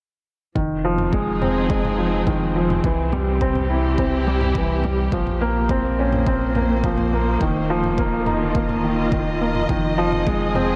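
A felt-muted upright piano sits up front with a soft, intimate riff, its tone dulled by a low-pass filter and trailed by tape echo, over a dark symphonic string section whose lush, bowed chords carry vibrato and portamento and pump with sidechain compression. This is cinematic, hypnotic piano and strings electronica at 105 BPM in F minor, moving through Fm7, C, Bbmadd9 and Ebsus2 before returning to Fm7. A round sine sub bass, also pumping, plays alongside a punchy layered electronic kick and very quiet, tape-tinged electronic toms, all set in light digital ambience in this short cut from a longer piece.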